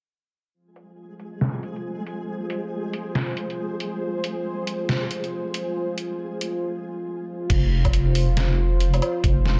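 A deep, wobbling bass with a soft, sine-like body arrives up front at the drop at 7.5 s, joined by a thumpy, compressed kick drum that lands the weight of this heavy, dark deep dubstep excerpt in F minor. The track sits at 138 BPM in a half-time feel with a 60% swing on the sixteenths. Before that, a moody, full-bodied analog pad holds sustained Fm chords from 1.0 s, its detuned sawtooth tone slowly evolving under a chorus sheen. A flickering, granular texture hovers quietly beside it until 6.6 s, bathed in its own reverb. A gritty, pitched-down trip hop drum kit of snare, hi-hat, crash and woodblock carries the opening under a filter sweep, its low-passed tops keeping the sound murky before a short break gives way to the drop.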